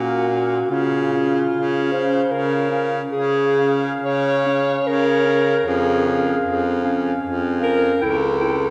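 A solemn, elegiac classical piece for single-reed quartet opens with all four voices sounding together from the start, in Bb minor and triple metre, moving with a rubato pulse between about 63 and 78 BPM. A clear clarinet carries the lyrical melody, while a mellow alto saxophone with light vibrato and a smooth top sings the second line beneath it. A second clarinet, mellow yet punchy, sits in the background with the accompaniment. The baritone saxophone anchors the bass up front, its clear tone touched with light vibrato yet sounding distant and roomy. The harmony settles on Bb minor before shifting toward Db major and arriving on A7/C# at 8.0 seconds, as this short cut from a longer piece ends at 8.7 seconds. A heavy cathedral reverb from a church or concert hall setting bathes the ensemble in a long, resonant decay.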